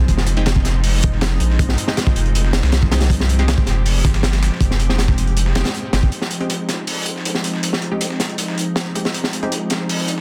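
Drum and bass with a jungle edge, atmospheric and nostalgic, where a lush, detuned sawtooth pad sustains an Fm7 chord under a deep, saturated sub bass that drops out at 6.1 seconds, an up-front crunchy breakbeat kit with a punchy kick and high-tuned snare layers over a gritty, overdriven sampler-style kit in the background, and a bold orchestra-hit-like synth stab with dub echo sits back in the mix before a filter sweep moves across it from 6.1 seconds in this dense, heavily limited cut from a longer piece.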